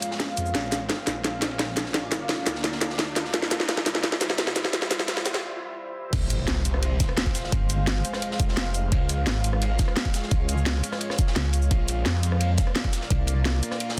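A straight 172 BPM drum and bass pulse in 4/4 drives this tense, mechanical cut of dark technical drum and bass in F harmonic minor, with an up-front electronic kit of cracking snare and bright hats, rim click, shaker and crash cymbal layered over a gritty, saturated breakbeat kit of dark ride and medium-tuned snare in the background. A drum fill and riser build through the opening seconds to a brief break, then the drop lands at 6.1 s with an impact and an overdriven, knocking electronic kick, while a snarling, distorted saw bass growls underneath and a heavy, pulsing pluck wobble bass with chorus surges in briefly at 7.5 s before returning from 10.3 s. Above it all, a deep, warbling vintage pad holds sustained chords from Db through Bb and C to Fm, its chorus-washed, reverberant chords pumping with sidechain in a dense, heavily limited mix.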